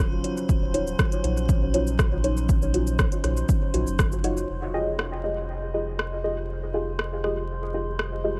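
A dry, close sound with a bed of vinyl crackle opens this hypnotic, cavernous dub techno excerpt at 120 BPM in F phrygian, where a deep, nasal chord stab with a filter sweep, phaser and dub echo pumps over a round triangle-and-square sub bass. Around them, a detuned, moody sawtooth pad and an eerie, warbling FM drone with its metallic, inharmonic edge sustain through chorus and built-in reverb. A punchy, layered kick drives the groove until 4.1 s, alongside an analog rhythm box of hi-hat, rim click and shaker with echo, as the harmony moves from Ebm9 to Fm9 at 4.5 s.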